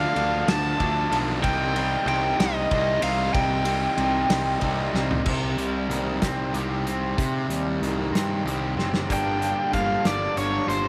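An overdriven lead guitar, a distorted riff guitar and a fuzz-laden bass open this restless, cool indie rock excerpt in 6/8. The double-tracked riff guitar sits up front with a bright, distorted bite, while the picked bass is round and overdriven, also placed forward in the mix. The lead guitar carries the melody with a compressed, picked tone and slapback echo, falls silent at 4.9 seconds, and returns at 9.1 seconds for a short solo as the harmony moves from D minor and C minor to G minor. A loose acoustic drum kit in a small, pumping room plays with a tight kick and a medium-tuned snare, adding fills just before each new section. A moderate echo-chamber reverb gives the whole track a roomy depth.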